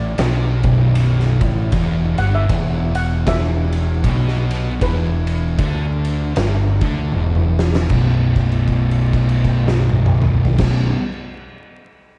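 A shimmering, metallic steel pan with tape echo leads this brooding, ominous stoner and doom metal excerpt in B minor at a swung 78 BPM, its melody floating over two dark, distorted fuzz guitar riffs in the background, a punchy, overdriven fingered bass up front and an oversized, low-tuned drum kit with a fat snare and punchy kick in a stone room; the pan stops at 7.1 seconds as a drum fill leads into a held note from 7.9 to 10.5 seconds, all within a dark, rolled-off production flecked with vinyl crackle.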